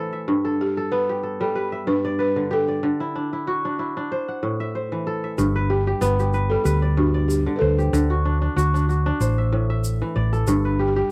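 A dry, close 1970s-style studio sound with light reverb frames this joyful clip of West African string and xylophone music in G major, moving at 94 BPM in 4/4 with a gentle swing on the sixteenths. A mellow, ringing kora sits up front, fingerpicking crisp arpeggios from the start, and a woody, buzzing balafon played with soft rubber mallets carries an airy melody from 0.6 seconds over a repeating G, D and Am progression. At 5.4 seconds a dark, round, punchy hollow-body electric bass enters up front alongside a grainy, bright egg shaker kept low in the mix.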